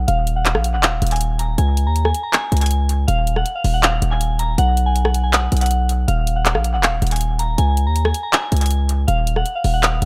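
Set in an echo-heavy digital ambience, this brooding, melancholic half-time trap excerpt pairs a soft, pure FM synth bell with a vintage warble, its melody treated with chorus, phaser, low-pass filter and analog delay, against a punchy, heavy sine 808 bass with a noise layer and a trap kit of handclaps, bright hi-hats and rim clicks carrying analog delay, both sitting up front from the first seconds.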